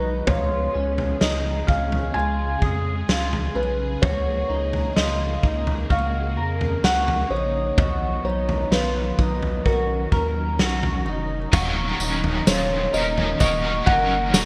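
Haunting and melancholic, this slow dream pop excerpt sets a felt-muted upright piano melody, soft and intimate with audible action noise and a touch of delay, over warbling vintage string-machine violas, a twangy, slightly broken-up guitar playing chorused arpeggios through a small old amp, and a deep, saturated sine sub bass. A punchy, up-front garage drum kit with a rolled-off top enters at 0.3 seconds, its crash, toms and tambourine ringing in a stone room, while the chords move from Db7 through Gbmaj7/Db and Bmaj7. At 11.5 seconds the harmony settles on Ebm7 as a double-tracked, overdriven stack guitar with tremolo comes in alongside a very quiet, woody kalimba, all within a bright 1980s-style digital sheen and plate reverb.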